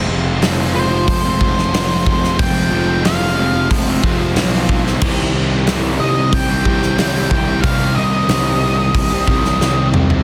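Cathartic and brooding, this quiet-loud alternative rock excerpt in F minor moves at 92 BPM from Fm to Cm at 5.0 seconds, built on a growly, punchy overdriven fuzz bass and a huge, up-front arena drum kit in a big natural room that enters at 0.4 seconds and closes with a fill at 9.6 seconds, while a bright fuzz guitar riff sits in the background over a dark, very quiet fuzz guitar and a double-tracked crunchy overdriven guitar, and a shadowy octave-fuzz lead guitar carries the high melody from 0.8 seconds, all in a dense, heavily limited modern master.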